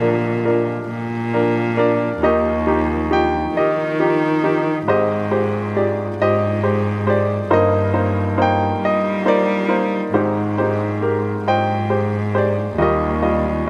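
Heartfelt and hopeful, this short excerpt of an acoustic folk-pop ballad in a straight 6/8 pairs a woody, vintage upright piano carrying the melody with a close, intimate bowed cello playing the bass line sul tasto with light vibrato and an airy bow, both sitting up front in light reverb as the harmony moves from Bb into Ebadd9, through Abmaj7 and Cm7/G, before returning to Ebadd9 at 12.8 seconds.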